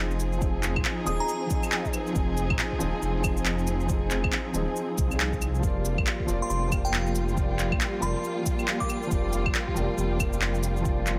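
A lightly reverberant digital ambience frames this ghostly, nocturnal future garage excerpt in F dorian at 138 BPM with a 16th-note swing, where a felt-muted upright piano with audible action noise and delay, a woody, lush studio string section and a rumbling, detuned saw bass with tube saturation all pump against the sidechain over Fm7 and Gm7/F, while tape-warm electronic shaker, cabasa, handclaps and claves sit up front with a deep electronic kick entering at 0.4 seconds, a crystalline FM synth bell with chorus and dub echo glints in the background briefly at 1.1 seconds and again from 6.4 to 9.4 seconds, and a very quiet, flickering granular texture creeps in at 6.7 seconds.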